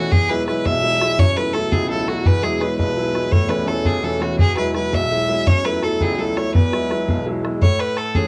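This is a home recording on cassette with a short, wet studio reverb, cut from a longer Celtic folk piece. It is a rollicking, lively jig in 6/8 at 112 BPM counted in dotted quarters, played straight in E major with tuning set to A4 = 439 Hz. A rich fiddle carries the melody up front, bowed by one player with light vibrato and a smooth, even tone that stays silky at the top. Beneath it, a bright upright piano with a cassette-tape colour supplies woody, brilliant accompaniment with an open, long sustain. A dry, reedy pedal harmonium, also tape-coloured, breathes a low drone in the background until 7.7 seconds, while a damped, tight bodhran sits close in the mix. The chords circle through Eadd9, F#m7 and A across the single section.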